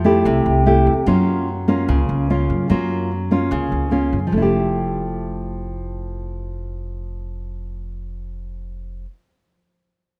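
Sophisticated and relaxed, this short bossa nova excerpt in F major moves at 147 BPM in a straight 4/4, with an up-front, thumb-plucked nylon-string guitar carrying the accompaniment in a classical, warm tone over a woody, pizzicato upright bass strung with steel. The harmony shifts from Fmaj9 to Gbmaj7 and returns to Fmaj9 at 4.3 seconds as the passage moves into its second section. A moderate, lush hall reverb surrounds the pair, though the overall mix has the rough feel of a home demo.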